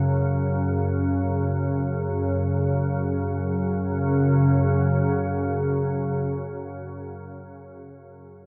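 An organ-like drone sits up front in this short dark ambient excerpt, a calm, detuned unison of sine tones with a slow attack and long release, held between F#2 and C#3 and thickened by ensemble chorus and its own built-in reverb. In free time, the mood is cavernous and unsettling, settled on an F#5 chord from the opening moment. A bronze singing bowl rings very quietly beneath it at C#5, struck with a wooden striker, its metallic, meditative tone dark and smooth with slow beating. The bowl stops at 3.3 seconds, leaving the drone alone until it stops at 6.7 seconds. The whole piece is bathed in a huge, wet ambient reverb lasting 7.7 seconds and carries the worn, warbling pitch drift of old cassette tape, and it is cut from a longer piece.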